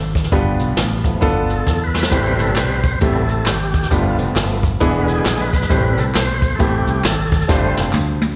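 Jubilant and soulful, this short uptempo gospel excerpt swings in 4/4 as a tonewheel organ, thick and lightly overdriven through a slow rotary speaker, takes the lead over growly fingered electric bass, a clear grand piano with audible action noise and slapback echo, an up-front brush drum kit with a boomy kick and fills at 1.7 and 7.5 seconds, and tambourine and group handclaps joining at 2.1 seconds, all heard as a live gig through the venue's PA in recital hall reverb.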